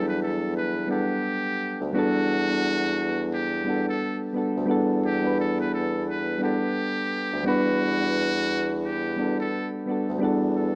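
From the first moment, a buzzy, breathy muted trumpet carries a jazz-style melody with light vibrato through a low-pass filter and analog delay over soft, round electric-piano-like synth keys warbling with chorus and cassette-tape coloring, while a mellow bassoon holds the bass in a classical style, sitting on a single Em11 chord in this nostalgic, hazy lo-fi hip hop excerpt at 87 BPM in swung 4/4 with moderate studio reverb.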